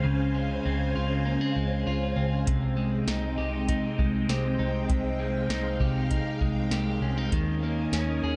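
Ethereal and dreamy, this short dream pop excerpt at 99 BPM in Ab major sets a swirling, bright string machine with ensemble chorus and phaser holding sustained chords against a slightly broken-up, up-front electric guitar arpeggiating through tape echo and subtle chorus, a round, foam-muted picked bass, an analog rhythm box with deep kick, crisp snare and metallic hats entering at 2.5 seconds, and a mellow soft-mallet vibraphone ringing through tape echo in the background from 3.1 seconds, all moving from Dbmaj7 to Abmaj7/C and settling on Eb7sus4 in a dark production with light reverb.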